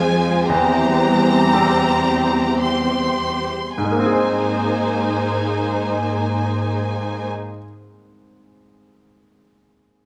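Uplifting and hopeful, this cinematic passage cut from a longer piece unfolds in a slow, rubato 3/4 around 52-60 BPM in Ab major, slowing down over its first 3.8 seconds. A rich violin section carries the high melody with expressive vibrato, sounding somewhat distant, while a second violin line beneath it plays with a soft attack. A smooth, even viola section fills in the middle, and an up-front cello section anchors the low end with its own vibrato. A bright, polished grand piano with short sustain sits in the background, and a very quiet concert harp adds mellow, ringing thumb-plucked arpeggios. The strings and harp drop away by about 7.7 seconds, leaving the piano to continue alone until 10.1 seconds, all set in a stone-room reverb.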